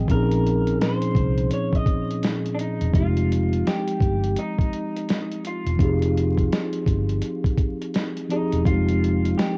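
Reflective and melancholic, this short slice of lo-fi hip hop in F minor moves at 84 BPM with a swung 16th-note feel, shifting from Bbm11 to Fm9 at 2.9 seconds. A mellow tine electric piano sits up front with cassette-tape coloring, over a round, punchy foam-muted electric bass and a gritty sampler-style drum kit with a thumpy kick and medium-tuned snare. A dark, slightly broken-up electric guitar carries the melody quietly through harmonic tremolo and tape haze, all wrapped in light reverb and vinyl crackle.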